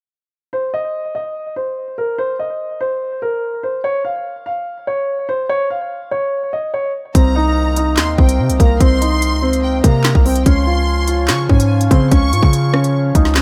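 Lightly reverberant studio sound frames this menacing, cold drill excerpt, where a dark, mellow grand piano carries the melody alone through a delay from 0.5 seconds. At 7.1 seconds the half-time drum kit hits up front with a hard-clipped kick, woody snare, crisp hats, handclaps and rim clicks, joined by a punchy, heavy 808-style bass with a fast attack and a decaying tone. Meanwhile, a smooth symphonic violin section adds a delayed second line, and a reedy, close-miked accordion holds dry chords in the background over Cm7 and Dbmaj7.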